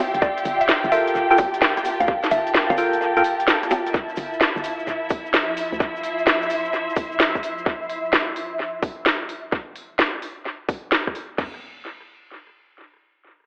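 This is a soulful, moody two-step UK garage excerpt in G dorian at 129 BPM, with a 67% swing on the sixteenths and tuning set slightly low at A4 = 439 Hz. A lush, dark symphonic violin section holds vibrato-laden chords through Gm9, Dm9 and G7(no3), roughened by vintage 12-bit sampler grit and pumping against the sidechain, with a filter sweep applied to it from 3.9 s until it drops out at 9.5 s. A cloudy, detuned granular pad with its own reverb and a hollow, bouncy FM bass also pump beneath the chords, while a woody, round synth pluck hangs in the background with chorus, phaser and dub echo, and a full-bodied, wave-folded organ stab sits up front with chorus and dub echo of its own until 3.2 s. The layered electronic garage kit is tape-warm and up front, with a tight kick, cracking snare, crisp hats, rim clicks, bongos, toms and crash, and the bongos, hats, rim and snare carry tape echo, while a grainy, mellow tube shaker adds tape-echoed texture in the background. 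The whole mix is echo-heavy with a telephone-like tone and a wet spring reverb, and only the drums carry on past the other parts to about 11.5 s.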